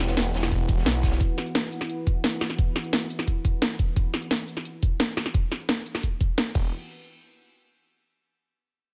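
The sound is dry and close, with the drums and bass up front in a short cut from a longer piece of dark, aggressive technical drum and bass in straight 4/4. A moody, detuned analog pad holds a sustained E minor chord under a chorus shimmer and sidechain pumping, with a filter sweep running through it. A snarling, growling saw bass, distorted and tube-saturated, digs in low beneath it until 1.2 seconds and then returns briefly at the very end. The main drum and bass kit drives the passage with a cracking snare, metallic hats, shaker and crash. A knocking, tape-colored electronic kick joins at 0.5 seconds. Early on, a gritty, saturated breakbeat kit with a high-tuned snare and a rolled-off top sits in the background before dropping out, and the full kit stops at 6.6 seconds, leaving the pad and a brief final return of the bass.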